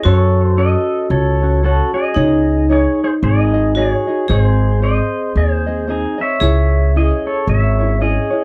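Hawaiian music with a languid, sunny mood and a lilting swing, heard in a short section cut from a longer piece. Electric pedal steel guitar carries the melody with a clean, compressed sound, fingerpicks, slide and volume swells, while a metallic, ringing vibraphone struck with hard mallets adds a second line with medium motor vibrato in a boxy small room. Light, thumb-plucked tenor ukulele fills the accompaniment, and a woody, thumpy pizzicato upright bass on gut strings sits dark and up front in a dry, close 1970s-style studio sound with light reverb.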